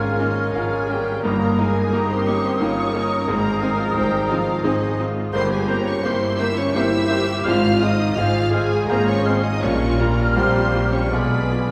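A brilliant, up-front concert grand piano carries the melody with deep bass and long sustain in this tragic, passionate classical excerpt in a rubato 3/4 at 77-90 BPM. Veiled, con sordino symphonic violins share the melody while an airy flute ensemble, a clear solo clarinet and a background section of muted studio violins trace second lines. A mellow solo bassoon and a very quiet muted viola section fill in the accompaniment, a French horn section holds background chords, and muted cellos and double basses supply the bass. The harmony turns from Ab major to F minor at 5.3 s, all heard from further back in a reverberant concert hall.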